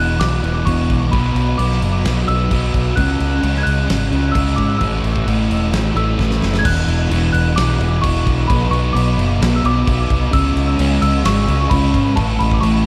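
Dreamy and blissful, this shoegaze and dream pop excerpt rides a straight rock pulse, built on a double-tracked fuzz guitar riff that sits up front, warm and compressed with a touch of chorus, over a dark, round, foam-muted electric bass. A small celesta floats a delicate, bell-like melody high above through analog delay, while a big rock kit with a fat snare, punchy kick and rolled-off top enters at 0.2 seconds and plays a fill at 6.2 seconds before the passage repeats. Everything is soaked in a huge ambient reverb, giving the mix a hazy, drifting glow.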